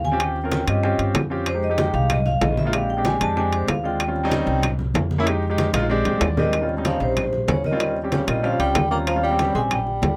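A straight, danceable 4/4 groove drives this lively Afro-Cuban jazz excerpt. It is built on distant, hard-handed congas with a bright, thin skin, very quiet low-tuned bongos with a round, vintage tone, ringing metal-shell timbales heard close and dry, and woody, saturated claves set in the background. Up front, a pizzicato upright bass on gut strings lays down a thumpy foundation while the vibraphone carries the melody as a solo, its medium hard mallets drawing a metallic tone from a boxy small room with the motor off. A warm concert grand piano accompanies with an intimate sound, deep bass and audible action noise. A drum fill arrives at 5.7 seconds and a piano fill at 5.9 seconds. A mellow, roomy tenor saxophone enters at 6.4 seconds with a subtone second line full of scooped notes, just ahead of the new section at 6.5 seconds, all under light reverb.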